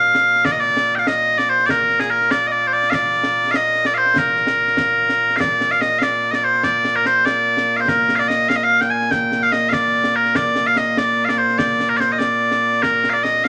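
Vinyl crackle and a wet, club-sized reverb frame this stirring, proud excerpt of Scottish pipe music in Bb major, moving at 97 beats per minute in a straight 6/8. Loud, piercing bagpipes sit up front and carry the melody continuously from the opening, with a new passage arriving at 5.4 seconds. Beneath them, close and dry concert snare and bass drums with dark cymbals sit lower in the mix and enter at 0.1 seconds.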